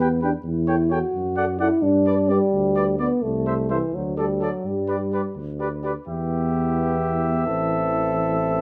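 Classical brass quintet writing in G major, moving in 6/8 at 86 dotted-quarter beats per minute, with a triumphant, noble character across this short excerpt cut from a longer piece. A mellow trumpet carries the melody between D5 and G5, sounding distant and roomy, while a second trumpet shadows it below with a smooth top and light vibrato. Up front, the euphonium supplies accompaniment with a soft attack, and the tuba anchors the bass from A1 to G2 with gentle vibrato, both sitting louder than the trumpets. A French horn, warm and lightly vibrant, fills out the middle from the background. The harmony passes from A7/E through D/F# to G, then Am/C, D5 and G again before the second section turns toward Em at 6.1 seconds and Am at 7.5 seconds, all within a light reverb.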